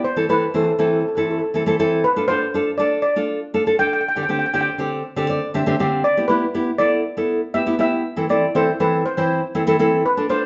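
This calypso excerpt in A minor runs at 120 BPM in a straight 4/4 and carries a dramatic, intense mood. A shimmering, metallic steel pan, played with medium rubber sticks, leads the melody up front from 0.0 seconds, moving between A4 and G5. A classical nylon-string guitar enters at 0.2 seconds, fingerpicked and equally up front, with audible finger squeak as it accompanies across a range from D3 to F5. The guitar adds a brief fill at 5.0 seconds while the harmony moves through Am/E, Dm, Gsus4/D and Em7 before returning to Am/E. The pair sound like a band playing live in one room, wrapped in a wet studio reverb with a short 0.7-second decay and a soft top end that stops at 7.7 kHz.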